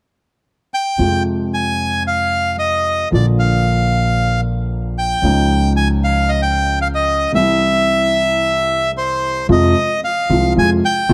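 A reedy, bright bandoneon opens this brief tango passage alone at 0.7 seconds, carrying the melody up front in a melancholic, tense mood. At 1.0 seconds a polished grand piano and a pizzicato upright bass join it, the piano supplying present accompaniment and the bass a woody, thumpy low line with a dark, acoustic steel-string tone. The time feels rubato, pulling and stretching against the four-beat metre. The harmony moves from Fm to Bb, then to Dbadd9 and C, before a new section arrives at 9.5 seconds with a return to Fm. A light reverb surrounds the trio, and the recording is a short portion taken from a longer piece.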